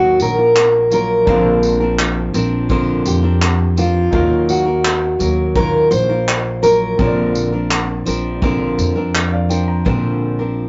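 A picked steel-string dreadnought guitar carries a sunny, carefree acoustic pop melody in Bb major at 84 BPM from the start, set against a bright fingerpicked nylon-string guitar with audible finger squeak, a woody pizzicato upright bass sitting forward in the mix, and a clear grand piano tucked in the background, while an unplugged small-room kit of tight kick, bundle sticks, handclaps and tambourine joins at 0.2 seconds; the excerpt moves between Ebmadd9 and Bbadd9 chords with light reverb and tube saturation in a rough rehearsal-room sound with a dull, rolled-off top, and the guitar melody stops at 7.7 seconds.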